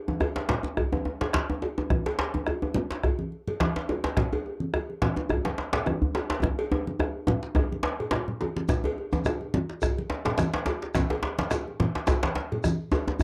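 Driving and festive, this West African drum ensemble excerpt swings on two djembes, one deep and up front with the other band-limited and vintage under hard hands, alongside bright low-tuned congas, a dark bombo and a distant metallic cowbell in a dry, close 1970s-style studio sound with light reverb, moving through a drum fill from 6.4 seconds until a grainy, mellow shekere slips into the background at 8.7 seconds.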